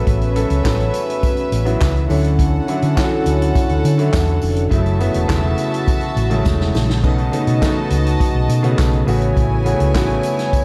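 Driving and sultry, this brief disco passage at 103 BPM is cut from a longer piece, with a round, punchy hollow-body electric bass up front and a vintage drum kit with tight kick, medium-tuned snare, hi-hat, handclaps and splash cymbal, plus a drum fill from 6.5 to 7.0 seconds and a jingly, very quiet tambourine entering at 0.7 seconds. A baby grand piano accompanies while a reedy, gut-string violin section with light vibrato carries a second line, and a mellow, very quiet French horn section holds sustained chords. The chords move from A69 through Dmaj9, F#m7 and B9 before returning to A69, all within a dark, warm production with light reverb.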